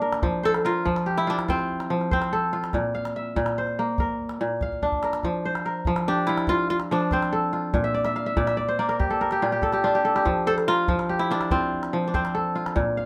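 Joyful and hypnotic, this short cut of West African traditional string music moves at 96 BPM in a straight 12/8 in F major, rocking between F and Bb chords. A mellow, fingerpicked kora spins up-front arpeggios while a second kora, crisp and ringing, carries a melody from 0.5 seconds, over a small calabash heard in a live room. The calabash adds a brief fill at 4.7 seconds, a kora fill follows at 7.9 seconds, and light reverb gives the sound some air.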